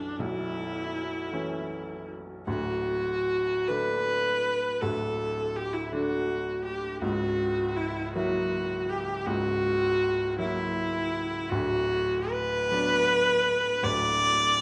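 A single bowed viola and a baby grand piano begin together, opening this brief fragment of a longer romantic classical duo in an elegiac, yearning mood. The viola carries the melody in its middle register with a rich, focused tone and expressive vibrato, sitting up front and a little above the piano in level. Beneath it, the piano supplies low, supportive accompaniment in a clear, intimate voice, with the mechanical noise of its action audible close by. The pace is slow and flexible in a compound metre, with the harmony moving from A/B through D and F#7/C# before settling on Bm/D. A wet recital hall reverb surrounds both instruments, and the duo plays together throughout the full 14.6 seconds.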